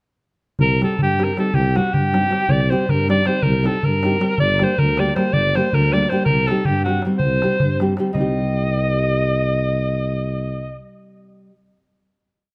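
In a straight 5/8 at 318 BPM in eighths, this short, virtuosic and restless Balkan wedding-band piece in C minor sets an up-front, bright alto saxophone with vibrato and slapback echo spinning a motif-based melody in sentence phrases over a dark tuba holding root and fifth on the main beats, fingerpicked nylon-string guitar off-beat triads with finger squeak, and a small clay-shell darbuka in the background until 8.4 seconds, moving from Cm to Gm and back before a final chord at 8.2 seconds rings into a moderate concert hall.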